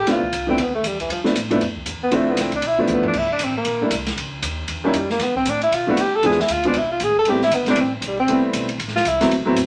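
A breathy tenor saxophone and a woody upright bass open this short excerpt of up-tempo small-group swing and bop at 234 BPM in 4/4, with a swung eighth-note feel in G mixolydian and a warm, swinging mood. The saxophone solos up front from the first moment, mellow and subtoned with scooped notes and a smooth top, while the plucked steel-string bass sits low and quiet underneath. An intimate grand piano, placed close with its action noise audible, accompanies from 0.1 seconds alongside an airy, polished acoustic drum kit with dark cymbals, a medium-tuned snare and a boomy kick, which plays a fill at 2.9 seconds. The harmony moves briskly from a rootless G13 through Dm7, C7, C#m and E7b9 before reaching Am7. A wet small-room reverb surrounds the group, giving the whole passage a natural, close-up sound before it breaks off at 9.7 seconds.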